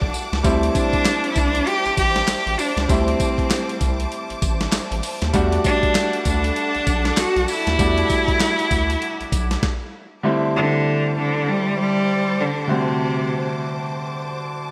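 A bright, 1980s-style digital production with a moderate plate reverb gives this punchy, slick new jack swing cut a polished R&B sheen and a swung sixteenth-note feel. A rich, focused bowed cello carries the melody up front with vibrato, over a clear, open concert grand piano whose accompaniment has deep bass. Behind them, a lush studio string section holds sustained chords high above, with vibrato and portamento. A gritty, compressed, sampler-style boom bap kit sits forward, pitched down with a thumpy kick, a medium-tuned snare, hi-hat, handclaps and tambourine, its sound shaped by gated reverb. A round, dark analog bass with a fast attack anchors the harmony as it moves from D7sus4 to Em11, but it drops out at 9.6 seconds and the drums follow at 9.8 seconds. The chords return to D7sus4 while the cello sings on until 13.6 seconds, and the piano and strings carry this fragment of a longer piece to its close at 14.7 seconds.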